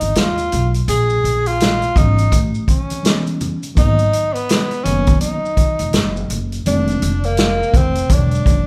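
Jazz-hop with a relaxed, warm mood, swung on the sixteenths and heard as a short cut from a longer piece. A breathy tenor saxophone carries the melody up front, its mellow subtone coloured by light vibrato and scooped notes in a jazz solo style. Beneath it, a pizzicato upright bass with steel strings sounds woody and thumpy. A vintage acoustic drum kit, natural and placed up front with a small-room character, plays hi-hat, a punchy kick and a medium-tuned snare with a rolled-off top. Very quiet congas and maracas add soft-handed, ringing, dry touches, and at 1.9 s a worn, slightly out-of-tune tine electric piano joins with clean, direct chords moving through shades such as Bbm7, A9, Abm9 and E13. The band plays live together in one room, bathed in a moderate large studio reverb.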